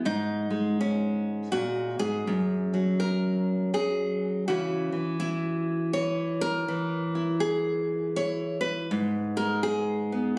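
Captured on a phone in the room and finished with light studio reverb and compression, this brief hopeful, pastoral folk fragment, cut from a longer piece, features a solo nylon-string guitar placed up front, fingerpicked in a classical style with bright, full-bodied fresh strings and audible finger squeak, moving through G#5, C#m and G#m in a swung 3/4 at 81 BPM, tuned to A4 = 444 Hz.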